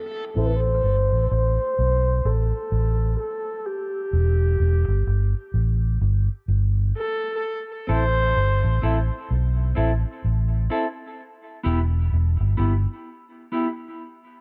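Reggae at a slow 64 BPM in A minor, spacious and hypnotic, swings gently on 16ths over an Am and Em vamp, with a filter sweep running through this section cut from a longer piece. An up-front viola, bowed sul tasto with light vibrato, a soft attack and an airy tone, carries the melody through a low-pass filter and dub echo until 8.8 seconds, while a round, foam-muted vintage electric bass sits prominently beneath. After a brief touch near the start, a mellow, clean, fingered electric guitar, dark-toned and filtered with its own dub echo, returns at 7.9 seconds as accompaniment, and the dry, close sound keeps the mix intimate.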